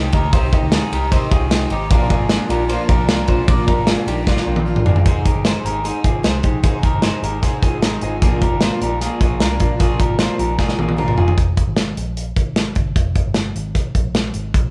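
An up-front modern studio drum kit with a punchy kick, a medium-tuned snare and a rolled-off top drives this nostalgic, youthful jangly indie pop at 152 BPM in Bb mixolydian, with fills at 4.3 and 10.6 seconds, while a dark, foam-muted picked bass holds the low end and a slightly broken-up electric guitar through a small old amp plays arpeggios. Behind them, a shimmering, octave-doubled twelve-string acoustic guitar and a reedy combo organ with spring reverb fill out the band sound, the organ adding its own fill at 4.3 seconds, and a very quiet detuned sawtooth pad with chorus sustains chords until 5.0 seconds. The guitars and organ stop at about 11.4 seconds as the chords move from Bb and Ab to Fm, leaving drums and bass to carry this excerpt, cut from a longer piece and captured as a live band in one room with light reverb.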